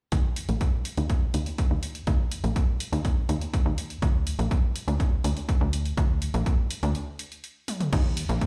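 From 0.1 seconds, a melancholic, hypnotic melodic techno groove at 123 BPM opens with an up-front layered electronic kick, a tight, nasal sequencer bass with a sawtooth and square-wave filter pluck, tube saturation and sidechain pumping, and a lower-level tape-warm analog drum machine adding crash cymbal, hi-hat and toms. A filter sweep runs across the evolving bass line through most of this short cut from a longer piece, before a break at 7.0 seconds and a drum fill at 7.7 seconds. The whole mix sounds as if played on a big sound system in a bare stone room.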